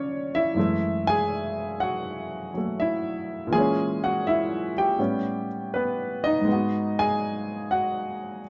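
A warm baby grand piano opens the excerpt alone, starting on a C#7b9 chord that quickly settles onto F#m9 in a moody, cool solo jazz setting. The tempo sits at an unhurried 81 BPM in 4/4, with a swung eighth-note feel that gives the phrases a relaxed lilt. The harmony moves through A#m7b5 and A9 before arriving on G#m7, spanning the keyboard from F#2 up to G#5. The piano sounds intimate and up front, close enough that the instrument's action noise can be heard beneath the notes. A moderate studio reverb rounds out the sound, and the piece, cut from a longer performance, runs to 8.5 seconds.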